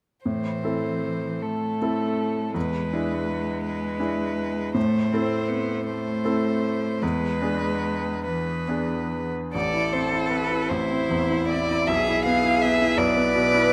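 Violin, cello and a baby grand piano enter together at 0.3 seconds in this slow, rubato chamber piece for piano trio in 6/8, solemn and melancholic in mood. The violin carries the melody up front with a warm, vibrato-laden bowed tone that stays smooth and even in its upper register. Beneath it, the cello sings a rich, focused second line, also bowed with vibrato. The piano supplies clear, intimate accompaniment with long sustain, its action noise audible through the close, detailed miking and its natural tone placed up front. The harmony sways between two chords, and a new passage begins at 9.5 seconds before this excerpt from a longer work ends at 13.7 seconds, all set in a moderate concert-hall reverb.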